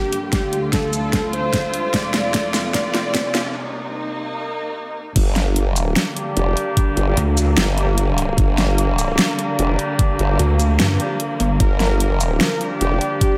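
The formant-sweep wobble bass anchors this menacing, chaotic heavy wobble dubstep excerpt at 149 BPM in half-time G minor, entering at 5.2 seconds for the drop with a wobbling, chorused, overdriven formant-filtered tone, joined in brief bursts by a heavier, saturated pulsing pluck wobble bass. Before that, a smooth, detuned supersaw melody with delay floats over veiled, muted strings that pump under sidechain, while a faint riser climbs through the build-up and an overdriven dubstep kit with a huge snare and a knocking electronic kick drives the drum fill. About a second after the drop hits, punchy, distant brass stabs with vintage 12-bit sampler grit join the mix, all bathed in a dreamy plate reverb.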